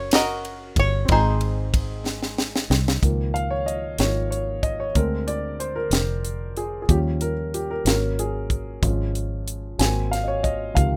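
A twangy, fingerpicked banjo carries the melody of this uplifting, jubilant slow gospel excerpt in 6/8 at 62 BPM in Db major, stopping at 2.7 seconds as a drum fill from 2.1 seconds leads into a woody upright piano solo from 3.0 seconds, its intimate tone rich with audible action noise. Underneath, a round, dark, foam-muted fingered electric bass and a tight funk drum kit with a dry, high-tuned snare and bright cymbals sit up front, moving through chords such as Bb7/D, Eb7 and Ab9sus4. The rough home demo mix carries light reverb.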